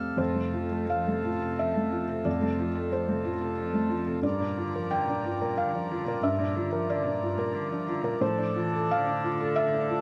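Lightly reverberant, this tender, hopeful neoclassical fragment, cut from a longer piece, sways in a rubato three-four as a soft, felt-muted upright piano sits intimately up front with mellow accompaniment over a reedy, breathing hand-pumped harmonium's sustained chords, while a single cello joins at 0.2 seconds with a second line played sul tasto, its airy bow and light vibrato carrying a gentle glow through the chords F, Gm7 and Dm7/A.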